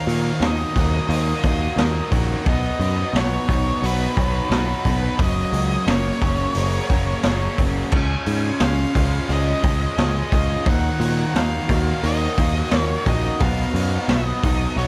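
Rock in a shoegaze and dream pop vein, this hazy, dreamy 88 BPM passage in 4/4 is cut from a longer piece and moves through Ebmadd9, Cbadd9, Gbadd9 and Dbadd9 before returning to Ebmadd9 and landing on Cb. An octave-fuzz lead guitar carries the melody from the first moment, its dark, distorted tone trailed by tape echo. Beneath it, three guitars play riffs: an overdriven electric guitar with a warm edge sits in the background, washed in reverse reverb; a very quiet, thick fuzz guitar adds a murky layer; and a tight, bright, double-tracked distorted guitar sits lower in the background. A picked electric bass, round and direct, enters at 0.1 seconds and sits up front alongside a raw garage drum kit of kick, snare, hi-hat and crash, whose punchy kick and medium-tuned snare come across saturated and gritty with a rolled-off top. Light reverb and small room ambience frame the dense, murky wall of sound.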